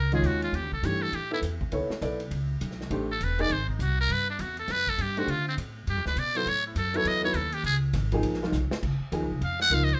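Warm and sophisticated, this brief fragment of small-group swing and bop at 203 BPM features a buzzy, raspy trumpet with a metal mute soloing up front with breathy growls, scooped notes and light vibrato, over woody, thumpy pizzicato upright bass, an intimate baby grand piano with audible action noise, and a vintage kit with dark cymbals and a boomy kick that plays a drum fill at 8.5 seconds, all set in moderate studio reverb.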